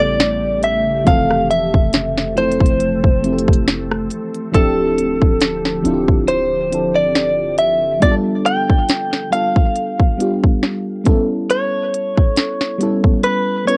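Contemporary R&B with a sensual, longing mood and a lightly swung feel, heard as a short cut from a longer piece recorded at home on cassette. A clean, direct-recorded electric guitar carries the melody up front through tape echo and plate reverb, over a mellow, round FM electric piano coloured by chorus and phaser, while a trap kit with a hard-clipped kick, sharp snare and crisp hats comes in at 0.2 s. An ethereal, airy pad with sidechain pumping sits in the background beside a deep, sine-like 808-style bass, and both fall away at 8.0 s.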